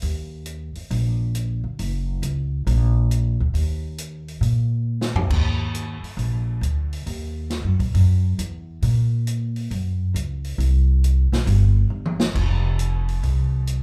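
Heard through a club's PA with a live room feel, this hypnotic, searching modal jazz fragment in Eb dorian swings at 136 BPM as an up-front, woody pizzicato upright bass with steel strings moves between F1 and Bb2 over a natural-sounding acoustic kit of dark cymbals, medium-tuned snare and boomy kick, whose fills come at 4.9 and 11.9 seconds, the second leading into a new section at 12.4 seconds.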